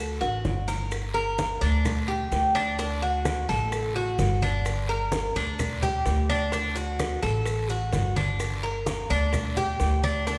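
A straight 4/4 pulse at 128 BPM drives this brief, nostalgic and sultry excerpt of Cuban son and guajira in G harmonic minor, tuned slightly flat to A4 = 436 Hz. Up front, a picked Cuban tres spins arpeggios between D4 and Bb4, its double strings and some octave-doubled courses giving a metallic ring. Beside it, a growly, thumpy pizzicato upright bass on steel strings holds the low end from G1 to D2, with a woody body. A percussion fill from 0.2 to 0.9 seconds brings in tight, high-tuned bongos and bright, thin-skinned but low-tuned congas struck with hard hands. Both sit in the background alongside grainy, compressed maracas, a raspy guiro that enters at 0.5 seconds, and very quiet claves that join at 0.9 seconds. The harmony swings between D and Gm every couple of seconds, and the whole group sits in a recital hall's reverberant wash with a 1.5-second decay.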